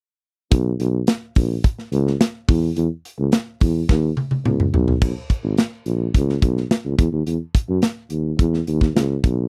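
Polished 1980s jazz-funk pop at 107 BPM in B major, glossy and upbeat, where a mellow, breathy tuba carries the low line as an up-front jazz-style solo with vibrato and scooped notes, over a small-room acoustic kit of tight kick, medium-tuned snare, hi-hat, crash and toms that plays a fill from 3.9 to 5.0 seconds into the second section, all in a dry, close 1970s-style studio sound with light reverb.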